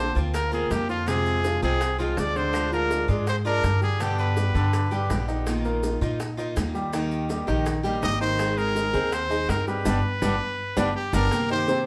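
A punchy, close-miked trumpet leads this nostalgic, sultry Cuban son and guajira passage, sitting up front with a pop-style solo melody that drops out at 5.2 seconds and returns at 8.0 seconds. At a lively 164 BPM in straight 4/4, a woody, thumpy upright bass with gut strings anchors the low end, while a clear concert grand piano spins polished arpeggios with deep bass, long sustain and audible action noise. A boxy parlour steel-string acoustic guitar adds picked accompaniment, with the occasional finger squeak. Tight, high-tuned bongos played with soft hands and grainy, mellow maracas sit in the background. The harmony moves from Bbadd9 through Fm, Ddim and G to Eb and Ab, with a band accent from 9.9 seconds before the cut lands on Cm7. The whole group sounds as if heard from further back in the room, bathed in a wet studio reverb.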